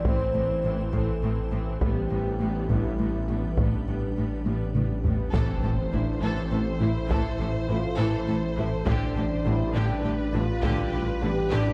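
A brooding, vast cinematic cue from a hybrid orchestral and electronic film score, moving in a straight 6/8 over Am and G/A chords. A menacing, saturated detuned saw bass with a filter swell sits up front, backed by a round analog bass riff, a calm organ-like pad with ensemble chorus, mellow distant French horns, a lush viola section, a background cello section and close, dry taiko drums. At 5.3 s a huge, dark impact lands as a warm violin melody with a second violin line and a very quiet double bass section enter, joined at 5.9 s by dark trombones, all on a moderate scoring-stage reverb.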